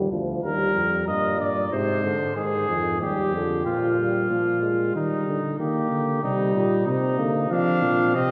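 A mellow, distant euphonium and a clear tuba open this lively, joyful passage together, laying down accompaniment and bass beneath an imitative classical canzona for brass ensemble in Eb major. At 0.4 seconds a vintage-toned trumpet enters with a second line, sitting up front alongside the tuba. The music moves at 94 BPM in a straight 3/4, with harmony moving from Eb through Ab and Cm before settling on a bare F5 chord. Only at 7.5 seconds does a second trumpet arrive with the melody, its smooth top ringing out as the most forward voice. A wet church reverb with a 3.3-second tail surrounds the ensemble, placing the listener further back in the room, and the passage is cut from a longer piece.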